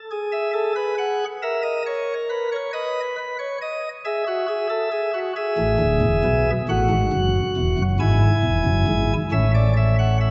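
Bathed in a wet concert-hall reverb with softened highs, this elegant, stately baroque-style four-part fugue in 6/8 at 46 BPM features a solo chamber organ whose light, sparkling flute stops sit up front with an audible chiff across a span from D1 to G#5, moving from E/G# through A#dim, B and E to a closing A chord at 9.3 seconds.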